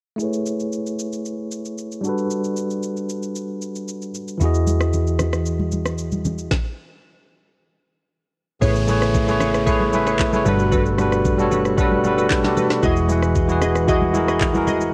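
Amapiano with a warm, relaxed mood, cut from a longer piece. A bright, bell-like tine electric piano sits up front playing lush ninth chords through a low-pass filter that sweeps across the opening. Beneath it, a smooth R&B drum kit of knocking kick, woody snare, rim click, handclaps and shaker carries a gritty vintage sampler texture. At 4.4 seconds a round, punchy hollow-body electric bass joins, along with damped, high-tuned congas in the background, and a stop at 6.5 seconds briefly suspends the harmony. From 8.6 seconds, very quiet pipe organ flute stops hold sustained chords, a glassy, detuned wavetable pluck adds decaying stabs through chorus and delay, and a faint electronic downlifter sits deep in the background. Light reverb and a worn, warbling cassette-tape character with drifting pitch colour the whole recording.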